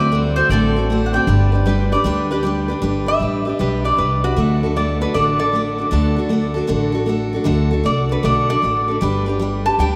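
A swung eighth-note feel at 155 BPM in 4/4 drives this nostalgic, down-home fragment of honky-tonk and classic country in G major, cut from a longer piece. Upright bass, plucked pizzicato with a woody tone, sits up front alongside a bright, full-bodied dreadnought steel-string guitar that picks out the accompaniment over chords moving from D7 to G, then D and back to G. A round, double-strung mandolin carries the opening melody, falling silent at 2.4 seconds. A lap resonator guitar, fingerpicked with a slide, enters at 1.7 seconds with a metallic, nasal voice and takes a steel-bar solo from 2.8 seconds to the end. A wet cathedral reverb places the group in a vast, echoing space, giving the homespun playing a hall-like halo.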